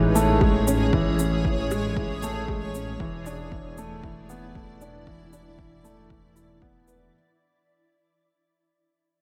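This short, moving and cinematic piano-and-strings electronica excerpt opens with a felt-muted upright piano riff sitting up front, soft and intimate, with audible action noise and a digital delay trailing its notes. Beneath it, a granular cloud pad holds blurred, evolving chords with a slow attack and long release, bathed in its own built-in reverb and pumping against a sidechain. A dark detuned saw bass rumbles low in unison, saturated and beating, and pulses with the same sidechain pumping. A gritty, overdriven shaker enters at 0.2 seconds, followed at 0.4 seconds by an overdriven electronic kick drum, deep and layered, both re-recorded in a large room for a roomy, produced character. The harmony moves from Amaj7 to E7sus4 at 3.0 seconds, and the whole clip sits inside a continuous fade-out, framed by light reverb and a digital ambience.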